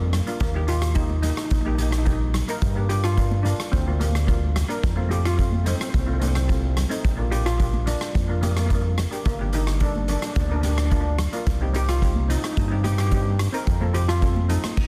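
A straight 4/4 calypso groove at 109 BPM drives this carefree, bouncy fragment cut from a longer piece, where two bright, shimmering steel pans played with hard rubber sticks carry the melody and accompaniment over a round, deep analog bass, an up-front street-band drum kit with a boomy kick, dark cymbals and a softly clipped snare, and ringing, high-tuned congas in the background, all moving through Eb, Gm7, F, Bb, Gm, Cm7 and F7 in a dense, heavily limited modern master with studio reverb.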